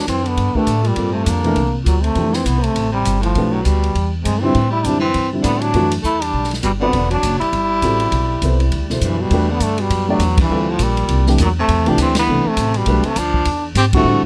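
A swung 4/4 pulse from an open jazz drum kit with dark cymbals and a boomy kick, together with woody, gut-strung pizzicato upright bass, drives this late-night small-group bop piece, where a buzzy, up-front metal-muted trombone carries the melody over an edgy baritone saxophone second line, a worn, intimate baby grand piano joins the accompaniment just after the start, and band accents land at 10.4, 12.1 and 13.9 seconds, all captured close and dry.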